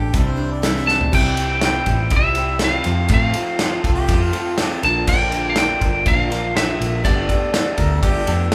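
Recorded live by a band in one room with light reverb, this hopeful, warm stretch of folk rock and heartland rock moves at 122 BPM in 4/4, passing from Cadd9 through C, F and Bb to Gadd9. A lightly driven, dark lead guitar carries the melody over a harmonica second line with light vibrato, while a bright picked steel-string acoustic sits in the background and an electric guitar through a small old amp plays a lo-fi, slightly broken-up riff with warbly pitch drift. A round hollow-body short-scale bass and an up-front country drum kit with a punchy kick, entering at 0.1 s and playing a fill at 0.9 s, anchor the bottom.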